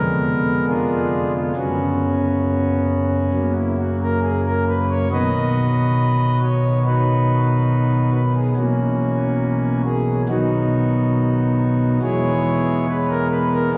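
A solo pipe organ on a smooth principal stop, voiced in a baroque manner and placed up front, plays a serene, reverent chorale-style classical excerpt in 4/4 with a rubato feel, its chords moving from a diminished seventh through suspended and dominant harmonies to the tonic before closing on a C-sharp minor seventh, spanning a deep low register to a clear upper line, all heard from within the room on a phone amid a long, wet church reverb that hangs for 3.2 seconds.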